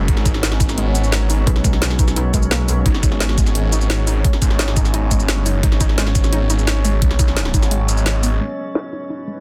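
A dense, heavily limited digital mix carries this tense, mechanical slice of dark technical drum and bass in G# minor at 173 BPM, where a snarling, distorted saw bass growls up front over an overdriven, knocking electronic kick and a layered kit of woody snare, bright filtered hats and shaker. In the background sit an eerie, inharmonic metallic drone with chorus and reverb, a deep, ring-modulated ambient pad pumping against the sidechain, and a warbly, lo-fi dusty pluck arpeggiating through dub echo. A saturated metallic wobble bass sustains B1 from 1.5 to 2.8 seconds, and the kick drops out at 7.7 seconds before the fragment cuts off.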